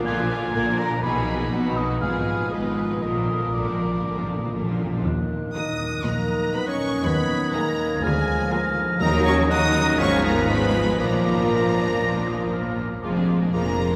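A dramatic, fast Romantic movement for symphony orchestra, cut from a longer piece, opens with an intense, distant violin section carrying the melody over a smooth second violin line, a very quiet, focused viola accompaniment, sustained chords from a mellow French horn section and faint, ringing harp arpeggios. Almost at once a rich cello section and a bowed double bass section with light vibrato lay down the bass, while a clear solo oboe adds its own line above. The feel is restless and urgent, with an elastic rubato pulse and a brooding minor-key harmony. A very quiet timpani fill on hard mallets sounds from 3.0 to 5.0 seconds and returns briefly later. At 5.0 seconds an airy, hollow flute and a background bassoon join, and the second section begins at 5.1 seconds, followed by a soft-attacked, very quiet clarinet at 5.6 seconds. The whole orchestra sits in a wet, cathedral-like reverb that gives the lush strings a spacious, distant glow.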